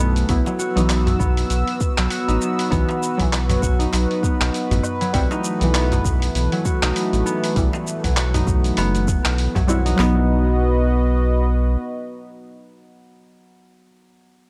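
A dark, wave-folded chord stab with chorus, phaser, sidechain pumping and tape echo opens this earthy organic downtempo excerpt in B major at 99 BPM, alongside a smooth, detuned analog pad with chorus and pumping, a ringing fingerpicked concert harp playing arpeggios through tape echo, and an up-front round analog bass. Within the first half second a gritty sampler-style kit of cabasa, handclaps, hi-hat and woodblock, an electronic afro-pop kit with deep kick and sharp snare, and a very quiet, crisp darbuka join to carry a swung sixteenth-note groove until about 10.2 seconds, after which the melodic parts close over a B chord in light digital ambience.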